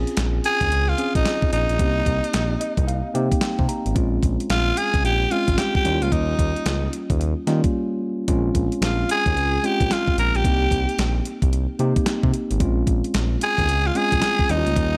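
A swung sixteenth-note new jack swing groove from a crisp 8-bit drum machine, with its thumpy kick, snare, hi-hat and handclaps bathed in gated reverb, drives this bouncy, confident R&B excerpt alongside a smooth sawtooth synth bass set up front. A worn, slightly out-of-tune tine electric piano plays the chords and adds a fill at 2.3 seconds, while a breathy, raspy tenor saxophone carries the melody from 0.5 seconds with vibrato and a gritty pop edge. A short break arrives at 7.7 seconds, and the sound is dry and close.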